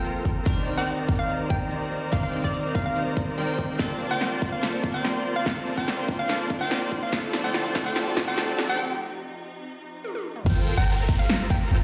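Emotional and bittersweet, this short future bass excerpt moves at 144 BPM in a half-time feel, tuned slightly below standard pitch to A4 = 435 Hz. A hollow, bouncy square-wave pluck carries the melody with chorus and tape echo, beside a twangy, clean twelve-string electric guitar that accompanies until 8.8 s, while a fat, detuned sawtooth polysynth plays a bold riff over very quiet, lush bowed strings holding sustained chords. Underneath, a deep, boomy 808-style bass with tube saturation and an up-front, overdriven electronic kick anchor the low end, joined by a big-room dance kit with a punchy snare, crisp hats, toms and crash cymbal that sounds re-recorded in a large room. The chords move from Cm9 through Bbmaj9 and F7 as a filter sweep and faint risers and downlifters drive the build-up, with drum fills and a break from 8.8 s before the drop lands on Gm11 at 10.5 s. At the drop, a soft, dreamy sine lead with vibrato enters in the background playing arpeggios, and sidechain pumping gives the pluck, guitar, polysynth, bass and lead their breathing motion. 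The whole mix sits in a moderate digital room reverb, as if played on a big sound system in a bare room.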